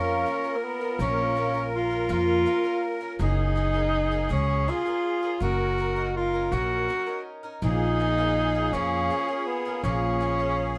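Gentle and peaceful, this short excerpt of acoustic folk in 6/8 is led by a mellow tenor saxophone that carries the melody with classical-style vibrato and a roomy, solo presence. Beneath it, a reedy musette accordion adds an airy, shimmering second line, while a picked twelve-string acoustic guitar supplies boxy, octave-doubled accompaniment, its finger squeaks audible. A woody, dark pizzicato upright bass sits up front, and light reverb softens the small-band sound as all four parts play together through the full 10.8 seconds.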